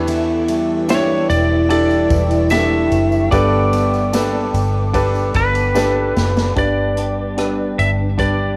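A tender, emotional pop ballad at 74 BPM in 4/4 opens with a mellow French horn section carrying a second line over clear concert grand piano, a bright, twangy twelve-string electric guitar with lush chorus and tape echo, a cloudy, evolving granular pad, and a dark, round, foam-muted electric bass placed up front, as Em7 gives way to Gadd9. A natural country drum kit with bright cymbals and a punchy kick comes in with a jingly tambourine in the background, and from 0.9 seconds a slightly broken-up lead guitar sings the melody. The horns drop out at 6.1 seconds, midway through a drum fill that leads into a closing G. The piano, horns and lead guitar carry cassette tape colour and plate reverb, giving this cut from a longer piece the intimate, lightly reverberant feel of a home recording on cassette.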